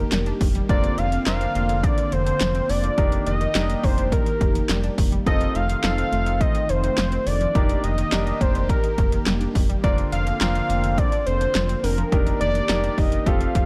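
A fat, detuned analog lead carries the melody up front with vibrato and a slapback echo, over a round, deep bass and a punchy, tape-warm drum machine of kick, snare, hi-hat and handclaps that enters at 0.1 s. A swirling phased pad holds sustained chords in the background while a very quiet, warbling analog pluck spins arpeggios. A clear, intimate concert grand piano joins at 0.7 s with accompaniment and audible action noise, giving this nostalgic, upbeat synth-pop excerpt a dry, close sound.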